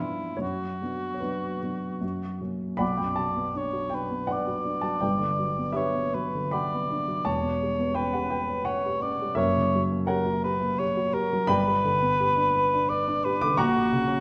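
A mellow cor anglais carries the melody from the start, sung in a classical style with light vibrato and sitting up front, moving between E4 and D5. Beneath it, a dark baby grand piano accompanies across a broad span from E1 to D6, its intimate, natural tone marked by short sustain and audible action noise. This solemn, elegiac romantic duo is in B minor at a tuning of A4 = 443 Hz. It moves in 3/4 with a rubato feel, drifting between 72 and 89 BPM. A brief opening phrase resolves onto F# before a second, longer passage begins at 2.8 s, passing through Gmaj7, C#m7b5/E and F#7b9 toward G and a closing F#/A#. A generous scoring-stage reverb of about 1.5 seconds wraps the pair in a dark, warm production, and the recording is a fragment of a longer piece that stops at 14.2 s.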